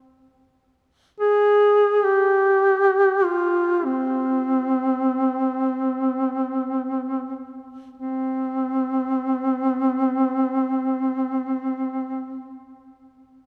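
A close-miked duduk sits up front in a moderate church reverb, its long decay lingering in a resonant hall. This brief cut from a longer Caucasian folk lament feels longing and mournful. The mellow duduk enters alone at 1.2 s with vibrato and scooped notes in a folk style, slowing through its opening phrases before a new passage begins at 8.0 s and the instrument carries on until 12.6 s.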